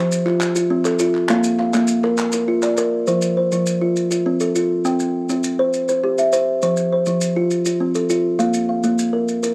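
Southern African traditional music in an mbira-style interlocking cycle, this rippling, hypnotic fragment of a longer piece sets an up-front kalimba's woody, hollow-box arpeggios over grainy maracas, with a human, live-room group handclap joining only from 0.3 to 2.9 seconds, all captured in a dry, close, vintage small-room sound.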